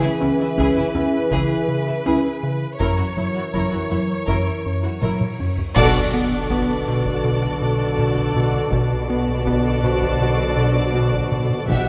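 A rubbery, wave-folded square bass riff opens this uneasy, ominous suspense cue at 81 BPM under veiled con sordino violins, violas, cellos and basses, a mellow French horn section holding chords, a soft-malleted vibraphone, background taiko from 0.6 s, round timpani strokes, and bright cymbals with concert bass drum between 2.8 and 7.2 s, moving from C#m and F#7 to Bm7 as a drum fill gives way to a band accent and a turn to B phrygian at 5.8 s, all set in a moderate scoring-stage reverb.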